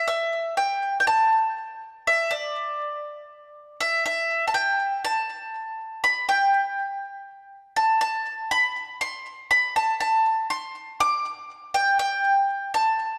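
A straight 4/4 pulse at 121 BPM carries this yearning, stirring folk fragment in A minor, tuned to A4 = 444 Hz and cut from a longer piece, where a bright, up-front bowl-back mandolin picks the melody on its double strings between D5 and D6 from start to finish at 13.2 seconds, touched by digital delay and set in a moderate scoring-stage reverb within a dark production.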